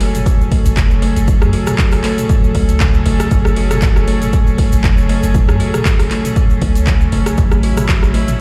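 An up-front, deep electronic kick enters at 0.3 s to anchor this hypnotic afro house excerpt. It lands on top of a boomy, sine-toned 808-style bass with tube saturation, a deep house kit of handclaps, rim clicks, toms and metallic hats that shares the kick's overdrive, and a grainy tube shaker tucked in the background. A woody, ringing kalimba plays arpeggios through tape echo, and a distant, earthy chamber string section holds sustained chords with light vibrato; strings, kalimba and bass pump against the sidechain. The harmony holds a single chord before shifting at 7.4 s, and the sound is that of a big sound system in a bare room, with large studio reverb.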